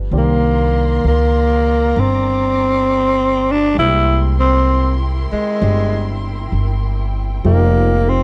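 A dark, intimate production with light reverb frames this wistful, swung jazz ballad fragment, where a breathy, growling tenor saxophone with plate reverb carries the melody up front over a woody pizzicato upright bass, a grand piano in the background, and a distant bowed string section holding sustained chords with vibrato and portamento, as the harmony moves from Cm9 to C7b13 at 3.8 seconds and Fm9 at 7.4 seconds.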